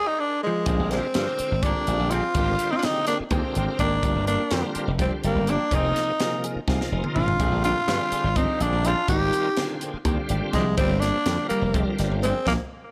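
Set in a straight 7/8, this bright, funky electric jazz fusion excerpt opens on a band accent, with a silky string machine chord that fades out by 0.7 s as a drum fill kicks the groove into motion; a second fill arrives at 6.7 s. Up front, a raspy, growling tenor saxophone carries the melody with scooped notes over a punchy slap bass and a polished kit with a high-tuned snare. Further back sit a dark hollow-body jazz guitar playing a second line, a shouting tonewheel organ with key click, slow rotary speaker and chorus vibrato, and very quiet clean guitar stabs, all in light reverb until a final accent closes the cut.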